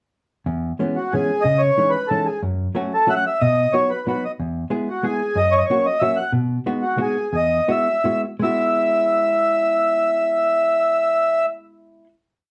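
A straight 3/4 waltz at 157-186 BPM opens this short, whirling and charming musette piece in E major, with a dark, clean hollow-body electric jazz guitar playing fingered, close-voiced backbeat chords from 0.5 seconds. A reedy, full-bodied accordion enters up front at 1.0 seconds with a motif-based melody in period phrases, moving through changes like C#madd9, F#m and B before the tempo slows at 6.3 seconds and the music settles onto a final chord at 8.4 seconds. The guitar sounds compressed and close, the accordion close-miked and dry, and the band plays live together in a small, reverberant studio room.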